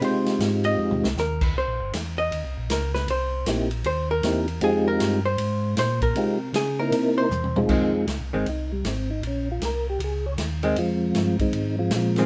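A swung 4/4 groove at 156 BPM drives this bluesy, smoky soul jazz organ trio excerpt in F minor, with a big-band drum kit (punchy kick, medium-tuned snare, ride, hi-hat, crash and toms) adding short fills near 0.8 and 7.3 seconds beneath a round, dark organ bass line with key click and slow rotary speaker. A dark, compressed, picked hollow-body archtop guitar sits up front and takes a clean solo over Fm7 and C7#9 until 7.7 seconds. From there the flute-like percussive organ, which first speaks briefly and then returns at 3.5 seconds, takes the lead with its second-harmonic percussion, chorus vibrato and slow rotary swirl, as the harmony moves to Bbm and back to Fm7, all within a moderate studio reverb.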